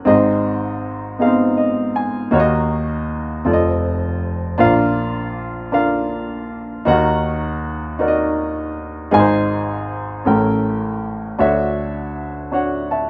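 A warm, natural baby grand piano plays alone and up front in this brief gospel excerpt, moving through a slow, steady 6/8 with a feeling both jubilant and reverent. An early fill arrives at 1.2 seconds, and the harmony travels from Ab through Ebm, F7 and Bb before an A7b9 turns toward a Dmaj9 at 11.4 seconds for a short closing section. A wet studio reverb surrounds the instrument, and the rough home-demo mix gives it an unpolished, intimate character.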